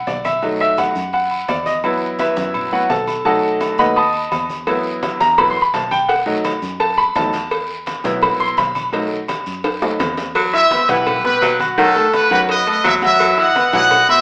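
This salsa excerpt has an AM radio sound, with the band playing live in one room under a wet studio reverb. At 169 BPM in a straight 4/4, it feels danceable and passionate, alternating between B7 and Esus2. A bright, brilliant concert grand piano sits up front with deep bass, carrying a solo through the opening stretch over a round, foam-muted fingered electric bass. Ringing metal-shell timbales and agogo bells sound close and dry, while low-tuned congas with soft hands stay in the background and a raspy guiro rasps along. Round cowbell and hard-handed bongos join at 4.7 seconds. A drum fill at 9.6 seconds leads into the next section, where a present, pop-style trumpet section takes the melody with vibrato from around 10.5 seconds, and a clear, punchy baritone saxophone adds a second line with light vibrato.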